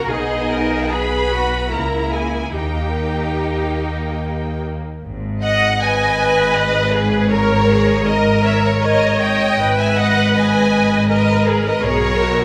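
Classical slow romantic movement for string orchestra in G# minor, moving in a rubato 3/4 at around 70-82 BPM with a yearning, elegiac mood. A lush violin section carries the bowed melody with soft attacks and expressive vibrato, while a second violin line, smooth even violas, clear-toned cellos and rich double basses fill out the harmony and bass throughout. The strings sit in the reverberant bloom of a scoring stage, and the music passes from its opening phrase into a new section at 5.0 s before settling on a Bmaj7sus2 chord at 11.8 s.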